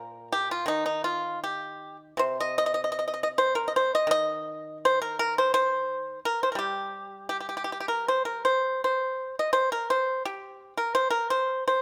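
The rhythm is free and rubato, loosely in 2/4 and hovering between 76 and 87 BPM, so the pulse stretches and settles as the phrases unfold. This is a short cut from a longer piece of Chinese traditional music for solo plucked strings, carried entirely by a single pipa from the first moment to the close at 11.8 seconds. Played with fingerpicks, the pipa sounds acoustic, percussive and dry, sitting up front and reaching from Bb2 up to Eb5. The mood is longing and contemplative, with the opening section giving way to a new one at 8.1 seconds. Close, detailed microphones catch the instrument's warm body, while a light reverb lends a touch of space around it.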